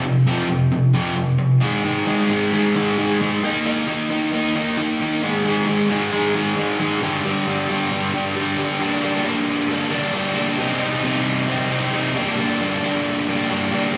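An up-front, overdriven electric guitar plays alone throughout this cathartic, brooding rock fragment cut from a longer piece, its picked, double-tracked tone moving through power chords such as F5, Ab5 and G5 before settling into minor chords around 8.8 seconds, all captured live through a venue's PA with a short, wet club reverb and the glow of a recital hall.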